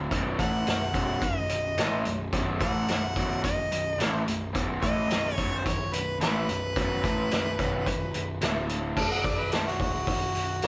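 Drenched in a stone-room reverb that places the band live in one space, this raunchy, swaggering blues rock and southern rock fragment in B mixolydian struts at 108 BPM, with a double-tracked, overdriven garage guitar riff running until 9.0 s, a round, fuzzed bass, a gritty vintage drum kit with dark cymbals and a punchy kick, and a clear, close-miked harmonica whose light vibrato and scooped notes carry the melody before taking a brief solo from 9.0 s.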